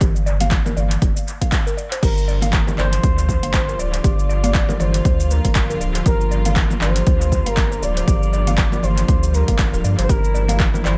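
A smooth, sawtooth portamento lead with vibrato and subtle chorus glides in at 2.0 s over this earthy afro house groove, joined at the same moment by dark, veiled strings bowed con sordino in the distance. Beneath them, a round sine sub bass and a punchy, overdriven electronic kick drive a swung 16th-note feel, while a deep house kit with metallic hats, handclaps, shaker and crash adds grit, and bright, hard-handed congas sit in the background. A woody, mallet-like FM pluck runs mellow arpeggios through chorus, phaser and sidechain pumping over a single minor-seventh chord, in a dry, echo-heavy mix cut from a longer piece.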